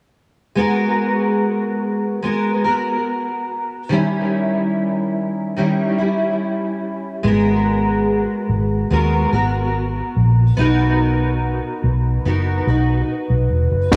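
In a straight 4/4 feel, this lonely, mellow bedroom-pop passage opens on a full-bodied fingerpicked jumbo acoustic guitar, coloured by ensemble chorus, vibrato and analog delay, moving through minor-ninth and major-seventh chords. A dark, foam-muted electric bass with a round, punchy tone joins at 7.2 seconds, and a hollow, woody synth lead with chorus and delay appears at 13.1 seconds. At 13.9 seconds a reedy, worn, slightly out-of-tune electric piano with fast tremolo and cassette-tape grit arrives alongside a dry cocktail drum kit's punchy kick and dark crash, all in a small, echo-heavy room.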